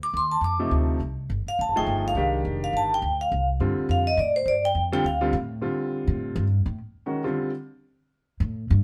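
A brisk swing in 4/4 at 208 BPM, with a 60% lilt on the eighth notes, drives this cool, searching modal jazz fragment, tuned to A4 = 443 Hz and cut from a longer piece. The vibraphone, played with medium mallets, opens on a G9sus4 harmony and carries the melody as a solo, its metallic, ringing tone shimmering with fast motor vibrato until it drops out at 5.3 seconds. Underneath, a woody, pizzicato upright bass with steel strings runs through the whole passage, then steps forward to solo for the closing stretch. A clear grand piano joins at 0.6 seconds with intimate, natural accompaniment in the middle register, its action noise audible, before falling silent at 7.5 seconds. All three instruments sit up front, and the band plays live together in one room, framed by a moderate studio reverb.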